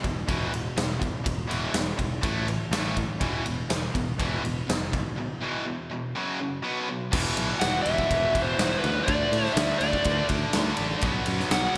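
A biting, overdriven lead guitar enters at 7.6 seconds over a menacing, driving hard rock riff laid down by a tight distorted guitar with slapback echo, an overdriven guitar sitting in the background, a growly picked bass and a huge, punchy arena drum kit with crash and ride cymbals, all bathed in a lush hall reverb, with a break between 5.2 and 7.1 seconds in this excerpt from a longer piece.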